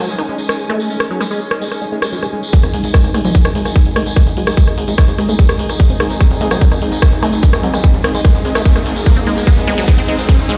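Psychedelic trance at 147 BPM in G# major, driving and intense, cut from a longer piece, where a squelchy, resonant acid bass riff with phaser and delay sweeps its filter over a pulsing gated texture, a blurred granular cloud pad, jingly tambourine and a garage kit's hats and rim clicks, before a tight, up-front electronic kick and a plucky analog bass arrive at 2.5 seconds to begin a build-up, topped by a background riser from 5.5 seconds and a drum fill at 9.1 seconds, all bathed in a stone-room reverb as if played on a big sound system in a bare room.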